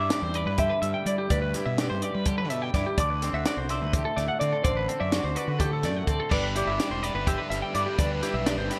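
Math rock blended with midwest emo, this wistful, playful fragment of a longer piece moves in a straight 7/8 over a G6 to D7 and back to G6 progression. A slightly broken-up, lo-fi guitar played through a small old amp carries the melody, colored by phaser and delay. Two semi-hollow electric guitars ring out clean and picked: one plays a compressed accompaniment with subtle chorus, while the other spins arpeggios with lush chorus from the background. A growly fuzz bass with overdrive sits up front beside a compact cocktail drum kit, whose dark, rolled-off cymbals, high-tuned snare and punchy kick are wrapped in gated reverb. At 6.3 seconds a biting, double-tracked overdriven guitar joins with a riff, all within a bright 1980s-style digital production with light studio reverb.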